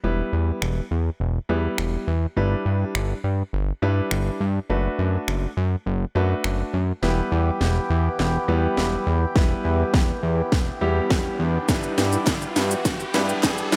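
A straight 4/4 dance-pop groove at 103 BPM drives this bittersweet excerpt in E minor, with a punchy house drum kit entering at 0.6 s, its cracking snare, kick, hi-hat, shaker and finger snaps sitting up front. A fat, detuned sawtooth bass and a clear grand piano, intimate enough that its action noise can be heard, both pump against the sidechain while cycling through Em, G6 and D6/F#. At 7.0 s a reedy, mellow accordion joins with sustained chords, also sidechain pumping, as the music moves into a build-up with a drum fill and a filter sweep. A very soft electronic riser rises beneath the texture, and a hollow, human group handclap slips in at 12.3 s. The mix is dry and high-pass filtered, with a driving energy throughout.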